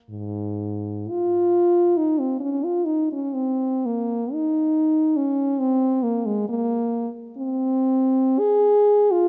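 A close, detailed recording places a dark French horn up front in a concert hall with a moderate reverb tail of 1.9 seconds. This nostalgic, serene classical piece for unaccompanied horn moves with a free, expressive rubato in Ab major, its tempo drifting between 54 and 74 BPM in 4/4. The horn plays alone from 0.1 to 9.3 seconds, spanning Ab2 to Ab4 with a punchy attack and a smooth top, in a short passage cut from a longer work.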